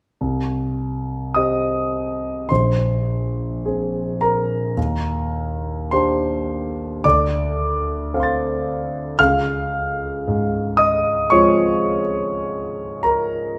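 A slow, rubato pulse in 4/4 at around 50-57 BPM carries this hazy, wistful impressionist solo piano excerpt, cut from a longer piece and lasting from 0.2 to 13.6 seconds. A concert grand, intimate and up front with deep bass and audible action noise, spans from Bb1 to A6 as the harmony drifts from C minor through Bbsus2, Ebmaj7 and Dm7 to a Dbmaj7 at 9.2 seconds. A moderate recital hall reverb gives the natural-sounding instrument a gentle sense of space.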